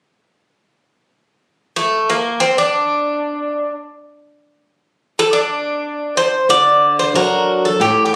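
Captured on a phone in the room with moderate studio reverb and compression, this brooding, free-time Greek folk passage cut from a longer piece puts a bright, metallic, picked bouzouki up front with its doubled and partly octave-doubled strings carrying the melody from 1.8 s, until a boxy, plugged-in, swing-style acoustic guitar steps forward at 6.5 s to accompany it on a D chord.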